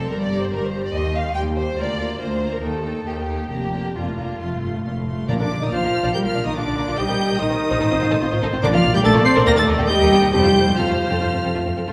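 A rich, focused violin section carries the melody high above the staff in this quick, graceful classical-period movement for symphony orchestra, cut from a longer piece in Bb major and moving at roughly 131-147 BPM in 4/4 with a cheerful, rubato feel. Beneath it, a second violin section with soft attacks and expressive portamento sits at a distance, while violas supply an even, smooth accompaniment and a lush cello section joins a close, expressive double bass section on the bass line. The opening phrase leans on minor-tinged harmony, starting on Gm and moving through Cm/Eb and Bb/D before settling toward F. At 5.3 s the texture opens up: a pure-toned concert flute and a punchy clarinet add second lines, a mellow French horn section holds sustained chords in the background, and articulate timpani with hard mallets mark brief accents and later return from 8.6 to 11.0 s. Generous concert hall reverb surrounds the strings and winds, giving the whole ensemble a spacious, resonant sheen.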